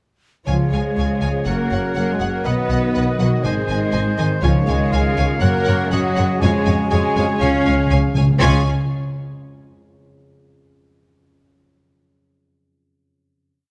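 A triumphant, adventurous cinematic cue in Db major at 121 BPM opens at 0.5 s with nearly the full orchestra together: lush, vibrato-rich violins carry the melody, rich violas and cellos move smoothly beneath, the cellos doubling the tune at the octave, and an expressive bowed double bass section sits up front with repeated, sustained bass notes. A hollow, airy flute, a vintage-toned clarinet, mellow French horns and tight, bright trombones hold background chords, a ringing harp spreads very quiet broken chords, and a clear oboe adds a counter-melody from 1.5 s. Hard-mallet timpani strike articulate single strokes on the bass notes and roll into a fill from 7.4 s, leading to a final chord at 8.4 s in a closely miked sound with light reverb.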